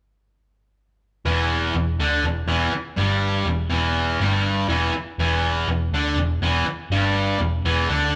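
Rock excerpt with a brooding, gritty mood, where a bright, overdriven, double-tracked electric guitar riff sits up front over a dark, round, foam-muted picked bass on an E minor chord from 1.3 seconds, all captured live in one large studio room with moderate reverb and a faint mains hum.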